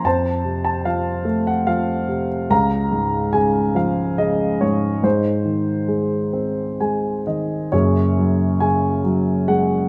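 A dark grand piano carries this short classical excerpt alone, its mellow, worn tone sitting up front with long sustain and the audible clatter of its action giving the playing an intimate feel. The mood is wistful and melancholic, moving in a gently rubato 3/4 at roughly 63-74 BPM. Harmonies drift from F to Db and then Ab, and the piano spans a broad register from Gb1 up to Bb5. A brief fill from 6.3 to 7.7 seconds leads into a new section, where the harmony settles onto a Gbsus2 chord. A moderate spring reverb surrounds the instrument, and the room sound places the listener further back. The passage is cut from a longer piece and lasts just under ten seconds.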